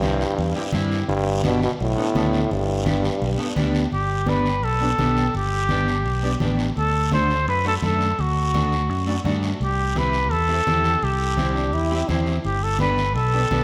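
Joyful and danceable, this cumbia excerpt moves at a brisk 169 BPM in a straight 4/4 feel, centered in G major. A growling trombone opens with a gritty, scooped-note solo up front through 3.6 seconds, then returns briefly near 11.4 seconds as a second line. At 3.9 seconds a breathy trumpet takes the melody with soft attacks, vibrato and an intimate, vintage tone. Underneath, a round, dark fingered electric bass sits up front, while an electric guitar at the edge of break-up supplies picked accompaniment coated in lush chorus. Low-tuned, close congas and a raspy guiro keep the percussion going throughout, and the chords move from C and G to D and back through C to G, all set in a moderate scoring-stage reverb.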